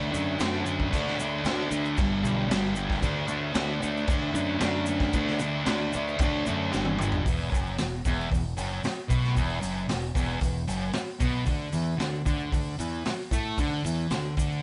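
A fuzz guitar riff and a growling, overdriven fingered bass open this raw, rowdy garage rock excerpt at 114 BPM in a straight 4/4, joined almost at once by a grainy tube shaker tucked into the background and, from 0.4 seconds, a saturated, boomy drum kit with a pumping small-room sound. The double-tracked, distorted guitar sits up front alongside the gritty drums as the chords move from D to G5, and a drum fill at 6.7 seconds leads into a new section at 7.3 seconds built on E5 and then D5. The band sounds as if it is playing live in one room with light reverb and a rolled-off, dark top end.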